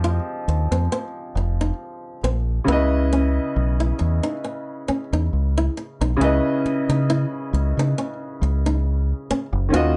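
A lightly swung sixteenth-note feel in 4/4 carries this late-night, introspective neo-soul and R&B excerpt. A round, punchy fingered electric bass with a dark dub character sits up front beneath a boxy concert grand piano with deep low end, while a bright, fingerpicked flamenco guitar adds a second line, all under light reverb as the harmony moves from Fm9 to Dbm9 at 2.7 seconds.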